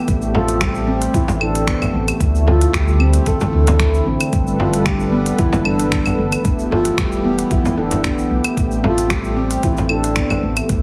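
Organic downtempo in A minor at 113 BPM, this short cut from a longer piece has a warm, mystical mood and a straight 4/4 feel, moving through Am7, D5, G and Em before returning to Am7. A ringing stainless-steel handpan plays meditative arpeggios with soft fingertips through tape echo, while a detuned sawtooth analog pad holds smooth sustained chords in the background, treated with chorus and sidechain pumping. Underneath, a round sine sub bass with a fast attack also pumps with the sidechain, alongside a gritty, thumpy sampler-style electronic kick. An electronic kit of claves, finger snaps, crisp hi-hats and shaker adds tape-toned texture, and a deep, close, dry frame drum played with soft hands joins at 0.3 seconds. Over this, a breathy, flute-like synth lead with vibrato carries the melody from 0.3 to 10.4 seconds, bathed in lush chorus and digital delay. The whole mix carries light reverb, small room ambience and a heavily compressed, radio-like sound.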